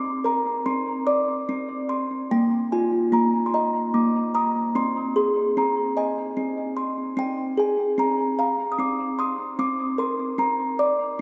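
A children's lullaby in Eb major, innocent and gentle, drifts in a rubato 6/8 at about 49 BPM with a tuning of A4 = 441 Hz, where a lone, up-front music box from a large box plays tinkling, mellow, slightly out-of-tune plucked notes from Bb3 to Eb6 through an analog delay. It moves from Bbadd9 into a second section at 2.3 s that passes through Ebsus2, Ab and Fm before returning to Bbadd9, all soaked in a dreamy 2.8-second plate reverb with lossy compression artefacts, in this short cut from a longer piece.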